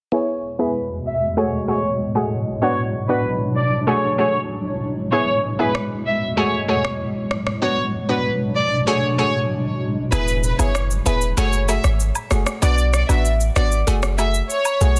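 A soft, sul tasto studio violin section carries the melody in this bouncy, sultry dancehall excerpt in F# minor at 96 BPM, its pure, floating ensemble tone softened by a low-pass filter and tape echo. Underneath, a round, detuned analog pluck with a noise layer and chorus plays the accompaniment, while a cloudy, granular pad with a slow attack and long release holds blurred, evolving chords through a filter sweep over a looping E, F#madd9, Bm, F#madd9 progression. Electronic rim clicks and shaker come in at 5.7 seconds, the snare soft-clipped. At 10.1 seconds the pad drops away and a deep, boomy, sine-toned 808-style bass arrives up front, joined by close, dry woodblock, cabasa, egg shaker and group handclaps in the background. The mix sits in a digital ambience with a dense, heavily limited modern master.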